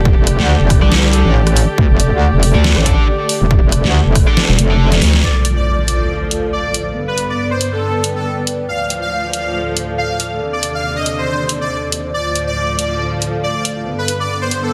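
Two up-front wobble basses, one saturated and square-edged and the other a metallic, aggressive FM tone, dominate the opening drop of this menacing heavy wobble dubstep cut in D phrygian at 139 BPM, with a swung half-time feel, a punchy layered kick, a deep-snared kit with hi-hat and rim click, and bright, double-tracked fuzz guitar stabs through distortion and delay. By the close of a drum fill the kick, guitar and basses have fallen away, and an electronic impact hits at 5.2 s as a detuned, phaser-washed supersaw melody takes the lead over the kit through Dm, G and Cmadd9/Eb. Beneath it all, a lush, bowed string section sustains chords and a warbling, nostalgic lo-fi pad holds a sustained texture, both pumping against the sidechain, set in light digital ambience within a dense, heavily limited modern master.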